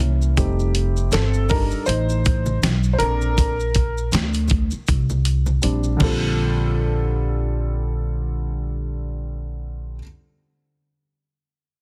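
A dark, mellow upright piano leads this cool jazz-hop excerpt, carrying a solo from the start until 6.4 seconds with a worn, slightly detuned tone and audible action noise that makes it feel intimate and close. Beneath it, a woody pizzicato upright bass with steel strings sits up front, grounding the lush harmony as it moves from F9 to Bbmaj9 and then Bb69. A gritty, sampler-style soul drum kit enters at 0.4 seconds with a thumpy kick, fat snare, hi-hat and crash, swinging the sixteenths and rolling into a fill at 4.9 seconds before dropping out around 6.2 seconds. Bright, dry congas and maracas sit in the background, adding light acoustic texture. The whole mix is set in a small room and squeezed into a heavily compressed, radio-like sound, giving this short slice of a longer piece a cool, warm character.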